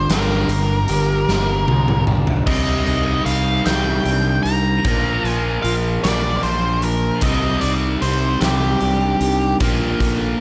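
Quiet-loud alternative rock in a brooding, dark 6/8, this excerpt opens in half time with a thick fuzz guitar riff that gives way at 2.5 seconds to a biting overdriven guitar riff, while a dark octave-fuzz lead guitar with slapback echo carries the melody into a solo, a lo-fi electric guitar through a small old amp arpeggiates in the background, a growly fuzz fingered bass anchors the low end, and a big rock drum kit with a fat snare and punchy kick plays a fill before the shift, all set in a lush hall reverb that gives an arena-sized sound.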